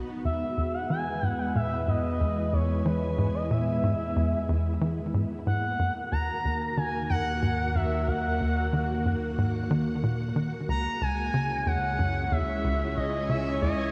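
This mysterious, hypnotic stretch of ambient space music, cut from a longer piece, opens with a lush, vintage string machine holding sustained chords over a tight, punchy sequencer bass riff whose nasal, filter-plucked tone is trailed by tape echo. At 0.2 seconds an expressive lead enters with a smooth melody, gliding by portamento and shaded with vibrato, chorus, shimmer reverb and tape echo, sitting up front alongside the strings. A warm, evolving analog drone joins at 1.0 second beneath everything, its pulse-width-modulated sawtooth tone colored by chorus and phaser. The harmony moves from E through D#m to C#m, with the strings' slow attack and long release letting each chord bleed into the next. The mix is dreamy and soaked in a three-second hall reverb, with a dulled cassette-tape top end that keeps the whole picture hazy.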